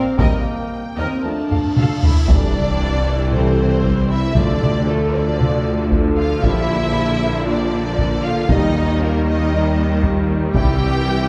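Cinematic epic orchestral film score excerpt at 116 BPM, dramatic and relentless, in which a focused violin section with vibrato carries the melody over a distant second violin line, lush violas, a background bed of cellos and double basses, warm sustained French horn chords, very quiet bright trombones and a mellow tuba, pushed along by hard-stick taiko drums whose fill and a huge, dark cymbal swell from 1.5 s lead into an impact at 2.3 s, the ensemble set back in a wet scoring-stage reverb.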